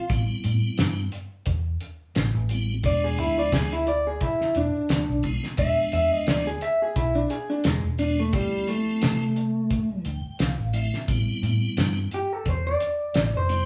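Wet studio reverb wraps this smoky, mournful straight-eighth soul blues fragment, where an up-front, slightly broken-up guitar through a small old amp solos throughout, a piping, key-clicking tonewheel organ on slow rotary speaker accompanies beneath and adds a fill from 9.7 to 11.1 seconds, a dark, foam-muted fingered bass holds the low end, and a cloth-damped, thuddy kit of fat snare, tight kick, hi-hat and tambourine sits close with its top rolled off.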